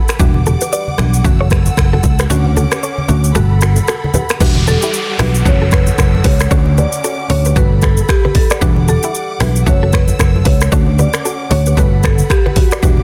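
A punchy fingered electric bass sits up front in this hypnotic, smooth afrobeats groove at 114 BPM in E dorian, with a produced afro-pop kit (deep kick, soft-clipped snare, hats, shaker, snaps and rim clicks, its kick dropping out from 2.3 to 4.4 seconds), quiet low-tuned congas, a woody FM synth pluck with chorus, a bright, clean direct guitar riff through tape echo, lush bowed strings pumping beneath, a downlifter sweeping in at 4.4 seconds and a dark rosewood marimba melody with tape echo entering at 4.7 seconds, all in a dry, dense, heavily limited mix.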